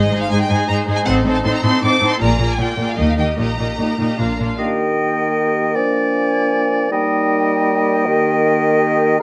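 In triple metre with a flexible, rubato feel, this lively, spirited classical-period movement for symphony orchestra opens with the strings: a rich, up-front violin section carries the melody over a lush, more distant second violin line, expressive viola accompaniment with vibrato and portamento, and smooth cellos and focused double basses on the bass. At 4.6 seconds the strings give way to the winds, where a bright, close-miked oboe, a very quiet, roomy clarinet and a pure, hollow silver flute with a crisp attack share the second line, while a mellow bassoon accompanies and a tight French horn section holds sustained chords. Moderate recital hall reverb surrounds the close, detailed sound of this short excerpt.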